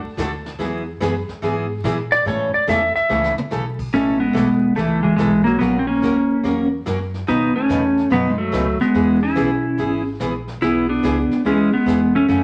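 A dark, compressed lap steel guitar sits up front, played clean with fingerpicks and slide, and its volume swells lead a solo passage through the first 3.9 seconds of this playful, down-home western swing piece in A major at 144 BPM with a swung eighth-note feel. Beneath it, a woody, thumpy pizzicato upright bass and a picked steel-string acoustic guitar with audible finger squeak carry the accompaniment. A vintage brush kit with a rolled-off top and a punchy kick stays low in the mix and adds a short fill at 3.1 seconds, while a wet studio reverb, vinyl crackle and faint mains hum give the recording an aged character.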